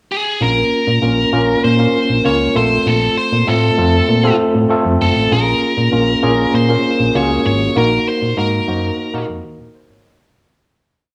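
Nostalgic and dramatic, this short 1980s-style pop piece in Bb minor at 98 BPM opens with a biting, overdriven lead guitar pickup, its hook-based melody then riding over a worn, slightly out-of-tune tine electric piano with syncopated close-voiced chords and short fills, and a punchy, round FM bass with a dark, syncopated pop-funk line. All of it is set in a spring-reverb cassette home recording that fades out from 7.8 seconds.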